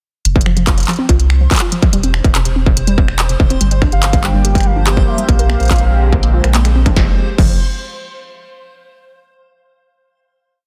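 Glitchy and cerebral, this short IDM piece rides a distorted, up-front electronic kick in a broken pattern and an ever-changing industrial kit of clanging snare, smooth hats, snaps, claps and crash, over a round sine sub bass with long gliding notes. A lo-fi, warbling pluck runs a 9-step loop that drifts against the bar through chorus and digital delay, while a reversed, dreamy texture holds a bright high note with sidechain pumping. At 3.6 seconds a swirling, detuned pad with phaser and 12-bit grit brings sustained chords, joined at 3.9 seconds by a velvety sawtooth lead with vibrato and tape echo, before the piece settles on a final chord at 7.0 seconds.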